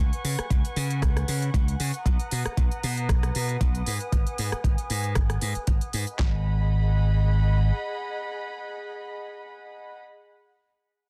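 A dark, intimate violin section with light vibrato and a smooth top sustains soft-attack chords from 0.0 seconds, pumping under sidechain and a low-pass filter sweep, beside a bright, punchy slap bass in this groovy, sleek nu-disco cut in G# minor at 116 BPM with a gentle 16th-note swing, joined by crisp, layered house hi-hats and rim clicks and a thumpy, up-front 12-bit drum machine with a fat snare and handclaps carrying studio reverb, over C#7sus4, Bmaj7 and G#m7 chords in a dense, heavily limited modern mix, until the drums stop by 6.3 seconds and the bass at 7.7 seconds, leaving the strings alone.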